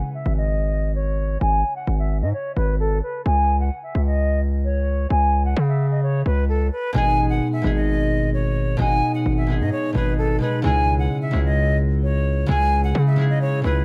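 A half-time 4/4 pulse sets a brooding, menacing hip hop groove in this short passage cut from a longer piece. A heavy, saturated 808-style bass carries the low end throughout, its distorted sine tone with a noise layer hitting with a fast attack and then decaying. Above it, a silver concert flute plays the melody with an airy, straight tone and crisp attack, softened by a low-pass filter and trailed by digital delay. The opening seven seconds form a break marked by a filter sweep, and at 6.9 s a fingerpicked concert harp enters with ringing, low-passed accompaniment that fills out the harmony. Light reverb and a small room ambience keep the sound close and intimate.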